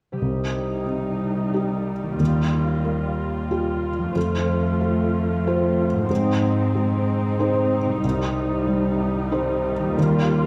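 Cinematic and longing in C minor, this moving 3/4 excerpt drifts rubato at 92 BPM as a ringing, thumb-plucked concert harp opens with arpeggios at 0.1 seconds, joined at 0.2 seconds by an intimate felt-muted upright piano with audible action noise up front, a woody viola section bowed sul tasto with vibrato, and a floating cello section carrying the bass in the background, all in a moderate scoring stage reverb over Cm, Ebadd9, F, Ab and back to Cm.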